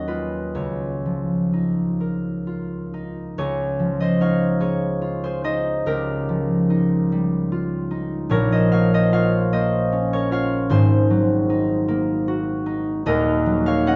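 Serene and dreamy, this classical solo for concert harp drifts in 6/8 with a free, rubato feel, the fingerpicked strings ringing out up front across a range from Eb1 to Db6. Lush extended chords such as Ebm11, Dbmaj9, Bbmadd9 and Ab9 unfold slowly, settling on Ebm7 at 13.1 seconds. Light reverb and a dark, warm production give the acoustic harp a soft glow in this 14-second passage, which is cut from a longer piece.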